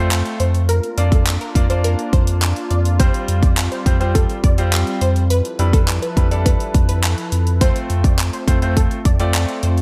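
An electronic pop drum kit sits up front in this summery, carefree dance-pop excerpt, its layered, punchy kick, handclaps and hi-hat carrying a gated reverb over a straight 104 BPM pulse in 4/4 from 0.1 s. Beneath it, a round sine sub bass holds F2 with a fast attack and sustained tone, pumping with the sidechain alongside a clear, polished concert grand piano playing accompaniment between G3 and D5 with short sustain. Further back, a smooth, nasal analog pad of detuned sawtooth sustains chords with a slow attack, long release and chorus. From 0.4 s, a lush unison pluck carries the melody between A4 and D5, its wave-folded, noise-layered sawtooth tone shaped by a filter sweep and moving notch, with subtle chorus and delay. The harmony in F major moves from F through Bb/F, Csus4/F and G6/F before returning to F, all framed by bright 1980s-style digital production.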